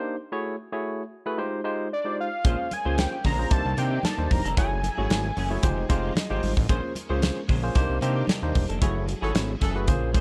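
A barky, lightly overdriven tine electric piano opens alone on minor-ninth chords in this slick, late-night early-eighties boogie funk excerpt at 113 BPM, joined at 1.9 s by a fat, detuned sawtooth lead with vibrato and at 2.4 s by a saturated analog bass, a tight, polished studio drum kit, very quiet bright congas, a clean, twangy guitar riff with ensemble chorus in the background and shimmering string-machine violins, while the piano slips in a fill midway and a punchy horn section adds a brief second line at 9.2 s amid a closing band accent, all set in a small room.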